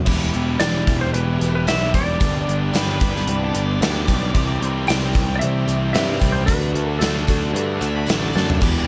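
A gated 80s drum kit sits up front in a bright stone room with bright cymbals and a tight kick, driving this gritty, brooding classic rock excerpt over a growly electric bass that moves through Em, G, C and D. Crunchy overdriven, tight distorted and double-tracked thick fuzz guitars churn out the riff behind it, padded by a very quiet jumbo steel-string acoustic, a jingly tambourine and a barely audible tonewheel organ on slow rotary. A twangy, compressed lap steel carries the slide melody from 0.6 seconds, a dark octave-fuzz lead adds a second line from 2.8 seconds, and a drum fill lands at 8.3 seconds.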